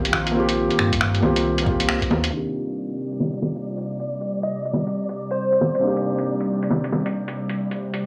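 Melancholic and rainy, this future garage excerpt sets a soft, felt-muted upright piano and an airy, breathy pad pumping under sidechain against a round sub bass that stops at 2.3 s, while a compressed, pitched-down sampler kit of bongos, finger snaps and filtered hi-hat swings up front alongside a soft, overdriven electronic kick, before a grainy, flickering texture drifts in at 3.1 s and a punchy, detuned square-wave lead with analog delay states a catchy phrase from 4.4 s, all set in a gritty hardware sound with a lush hall reverb.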